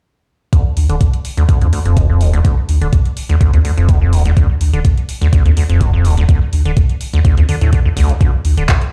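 This acid house clip is hypnotic and gritty, built on a single D minor chord with a light swing in the sixteenths. From 0.5 s, a squelchy, hollow square-wave acid bass up front plays the riff, its resonant filter sweeping while each fast-attack note decays, roughened by tube saturation. Beneath it, a deep, round sine sub bass holds sustained notes, also tube-saturated and pumping from sidechain compression. A thumpy, sampler-style electronic kick sits up front, while a punchy analog drum machine adds handclaps and hi-hat lower in the mix; both drum parts carry a tape-like warmth and the sound of being re-recorded in a small room. The whole track sounds as if played on a big sound system in a bare room, with light reverb and a large studio reverb around it.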